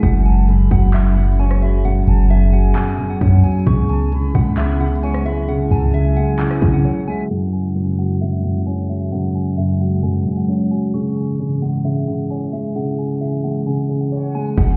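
A boomy 808-style bass and hard-clipped trap drums with crisp hats anchor this brooding, melancholic half-time trap excerpt at 132 BPM until the bass drops out at 6.8 seconds, beneath a dark, intimate grand piano with audible action noise, a glassy, ethereal FM pad, a soft chorused bell melody and a distant, airy flute, all heard muffled as if through a wall in a stone room over F#sus2 and C#m chords, with a filter sweep running from 7.3 seconds.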